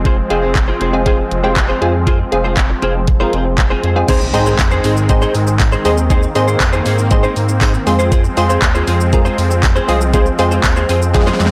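A blown-out, overdriven mix with light reverb carries this upbeat, summery dance-pop excerpt, where crisp, wave-folded wavetable chord stabs, a slow-attack supersaw swell and a deep, saturated sine sub bass all pump against the sidechain over Fm and Ab chords. A clean, direct-recorded electric guitar with ensemble chorus picks a compressed riff, while an up-front electronic R&B kit with knocking kick, fat snare, handclaps, hi-hat, shaker and crash drives the straight groove. A background electronic impact lands at 4.2 s, a very quiet, jingly vintage tambourine joins at 4.6 s, and a drum fill closes things at 11.1 s.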